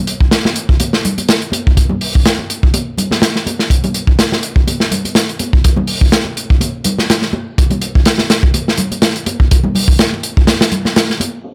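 A crunchy, gritty acoustic breakbeat kit sits up front from the start, its tight kick, medium-tuned snare and hi-hat saturated and filtered to a rolled-off top in a studio room, while ringing, high-tuned congas played with hard hands join close behind at 0.5 s, giving this raw, energetic swung 4/4 breakbeat fragment, cut from a longer piece, its drive until the kick drops out at 10.5 s.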